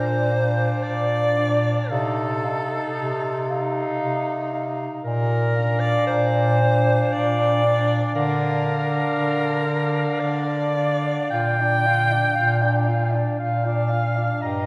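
Serene and lyrical, this classical piece for a single-reed quartet moves in an unhurried triple metre with a flexible, rubato feel. A mellow clarinet carries the melody, though it sits further back in the blend, while a bright alto saxophone sings a second line up front with a classical vibrato. Beneath them, a tenor saxophone with a vintage, vibrato-tinged tone supplies the accompaniment, and a warm bass clarinet anchors the low end from a forward position. All four voices play together throughout the 14.7-second fragment, cut from a longer work, over a gentle harmonic pattern that settles back onto its home chord. A wet church reverb with a long 3.5-second decay surrounds the ensemble, giving it the spacious resonance of a church or concert hall.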